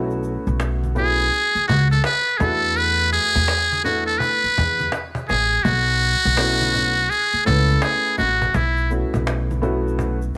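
Light reverb and a small-room ambience give this short cut from a longer jazz-hop piece an intimate, close feel. The mellow, cool groove swings over a sus chord vamp, with a dark, smooth grand piano in its middle register and a woody, pizzicato upright bass with steel strings holding down the low end. A band-limited, vintage-sounding cajon with faint snares keeps time, while tube shaker and congas, played with hard hands, ring out in the background. The focus is a trumpet with a metal mute, entering at 1.0 seconds and playing until 8.9 seconds. It sounds brilliant yet thin, buzzy and raspy, with light vibrato and a growling, gritty edge, close-miked and up front in the mix. It carries the melody as a jazz-style solo over the hip hop pulse.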